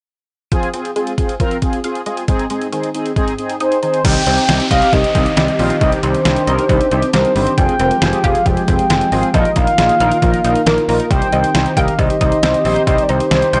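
A round, horn-like synth lead with vibrato carries the melody from 3.6 s in this nocturnal, cool synth-pop excerpt at 136 BPM in C minor. It rides over a dark, brassy chorused synth brass, a lush detuned unison pluck playing flanged, echoing arpeggios in the background, and a thumpy, overdriven 8-bit drum machine sitting up front, all present from 0.5 s. From 4.0 s they are joined by a shimmering retro pulse-width pad, a bright, punchy picked electric bass and an electronic downlifter, all captured in a dry, gritty hardware recording with transformer saturation.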